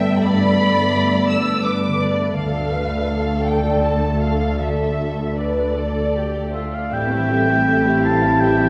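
A cinematic, emotional film score excerpt in a rubato 3/4 at around 77-84 BPM, full of longing, where muted, veiled violin sections carry the melody and a second line over a background viola accompaniment and an up-front cello bass, all bowed con sordino with vibrato, joined by ringing harp arpeggios. At 6.5 seconds a warm solo oboe enters up front with a second line, and at 6.9 seconds a mellow French horn section adds soft sustained chords while a lush double bass section deepens the low end as the harmony moves from Gadd9 and Dm to Am7. Heard from further back on a scoring stage, the orchestra sits in a wet, moving reverb.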